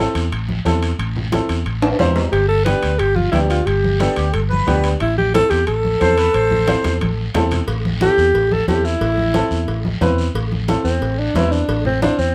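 Fiery and passionate, this cumbia excerpt rides on a growly, up-front fingered electric bass and a woody upright piano with audible action noise, while raspy guiro, ringing metal-shell timbales and cowbell, and hard-handed, low-tuned congas drive the beat; a clear alto saxophone enters at 2.3 seconds and takes a solo from 7.7 seconds, a reedy, airy accordion adds a brief second line from 4.0 seconds, and light reverb gives the band a sense of space.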